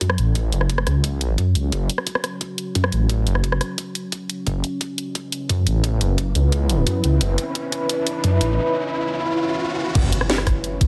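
A snarling, distorted saw bass growls up front from the first moment, joined by a knocking electronic kick and a drum kit with a cracking snare, hi-hat, rim click and crash cymbal in this tense, mechanical slice of dark technical drum and bass at 175 BPM in F# minor. At 1.2 seconds a deep, moody ambient pad enters, holding sustained chords with a warbling, vintage character from its chorus and built-in reverb, while a filter sweep runs across it. The whole passage works as a build-up, with the bass and pad both pumping against the sidechain and the bass carrying a fast attack and overdrive. A drum fill arrives at 4.5 seconds, and from 6.4 seconds an electronic riser climbs toward an impact. The bass drops out at 10.1 seconds, leaving the drums, pad and impact to ring in a light, studio-style reverb.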